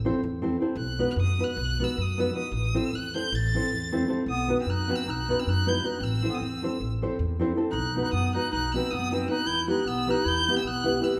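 Set in a reverberant recital hall, this short excerpt from a longer Balkan wedding-band folk piece is restless and fiery, driving at 311 BPM in eighths through a straight 9/8 in E harmonic minor, with chords cycling between Am and B before settling on Em. A dark, full-bodied nylon-string guitar, thumb-plucked and up front, carries the accompaniment over a woody pizzicato upright bass, while from 0.8 s a single bowed violin sings the high melody with focused vibrato, up front yet distant. At 4.3 s a mellow, roomy clarinet joins with a low second line in classical style.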